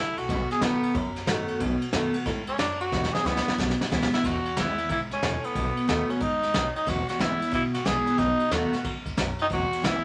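A growling tenor saxophone leads this rowdy, upbeat rockabilly excerpt in E major, taking a raspy, gritty solo with vibrato and a smooth top, set up front over a swung 182 BPM in 4/4. Underneath, a picked steel-string acoustic guitar with fresh strings gives a full-bodied, jumbo sparkle, while a pizzicato upright bass with gut strings adds a woody, thumpy low end. A vintage brush drum kit enters at 0.2 seconds, with a tight kick, medium-tuned snare and ride cymbal, its rolled-off top keeping it mellow and close. The drums play a fill from 2.9 seconds, leading into a new section at 4.2 seconds as the harmony moves between B7 and E. A wet club reverb gives the whole band the feel of a small, lively stage.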